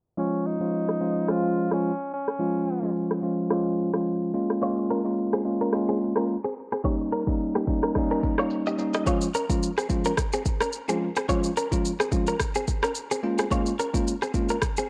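This short afrobeats excerpt opens at 0.2 seconds with a bell-like tine electric piano comping up front and an edgy tenor saxophone stating a brief, forceful melody with vibrato and scooped notes, its tone punchy and treated with analog delay, before the horn drops out at 2.9 seconds. An electronic afro-pop drum kit enters at 0.9 seconds with a deep kick, rim click and shaker, carrying a vintage 12-bit sampler grit and a lightly swung sixteenth-note feel at 108 BPM in 4/4. From 4.6 seconds a clean, direct-recorded electric guitar takes up a bright, picked, compressed riff, colored by spring reverb and analog delay. The harmony sits in Db lydian, moving from Db through Bbm7 and Eb7 before returning to Db for a second section that begins at 9.1 seconds, while a filter sweep runs through the opening section. The overall sound is dry and gritty with a low-pass filtered hardware character, giving the joyful, breezy groove a close, tactile feel.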